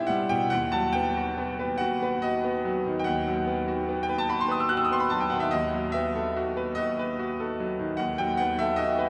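Melancholic and wistful, this brief excerpt from a longer romantic nocturne is cut short at 9.1 seconds. A single grand piano carries everything, its tone bright and brilliant yet smooth, with a vintage character, long sustain and an up-front presence. The tempo drifts slowly in 12/8, around 46-51 beats per minute counted in dotted quarters, and the rubato lets the phrases breathe freely. The harmony rests on E minor before turning to B over D# at 0.5 seconds, then moves to B7 over D# at 5.5 seconds. The piano spans from D#2 up to F#6, and it sits inside a wet church reverb with a long 3.7-second decay, while the tuning sits slightly high at A4 = 445 Hz.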